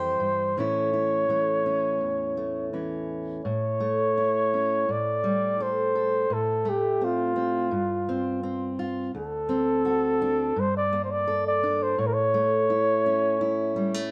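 Melancholic and reflective, this folk fragment in straight 4/4 sets a mellow, jazz-inflected flugelhorn melody, soft in attack with a smooth top, vibrato and a slapback echo, up front over a fingerpicked steel-string acoustic guitar that plays throughout, as chords such as Am7, G7sus4 and Gmadd9 pass beneath in a dark production with a moderate plate reverb.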